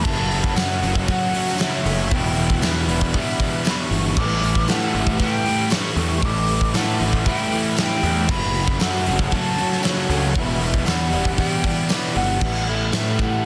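An airy, vibrato-laden concert flute carries the distant, expressive melody through analog delay over a hazy, dreamy shoegaze and dream pop groove at 116 BPM in A mixolydian, where a punchy fuzz bass and an up-front rock kit with a fat snare and tight kick in a bright stone room drive beneath a background wall of dark fuzz guitar with analog chorus, a compressed overdriven guitar with reverse reverb, and a double-tracked crunchy guitar that drops out at 12.4 s, while a very quiet shimmering twelve-string acoustic arpeggiates, a detuned, morphing wavetable pad holds chords moving from F#m7 through Em7 and A7sus4 to a closing A5, and a jingly tambourine sits far back in a large room.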